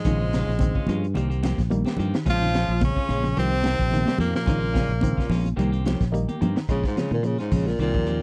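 A crunchy, saturated breakbeat kit with a high-tuned snare and punchy kick drives this funky, defiant afrobeat excerpt at 108 BPM in Bb dorian, joined by a growly, up-front fingered bass, bright damped congas in the background, two clean electric guitars playing stabs and arpeggios, and a reedy, worn electric piano with fast tremolo that slips in a fill at 5.6 s, while an edgy tenor saxophone leads over a breathy trombone and a bright trombone section until a mellow baritone saxophone takes a solo at 6.7 s in a dry, close 1970s-style studio sound.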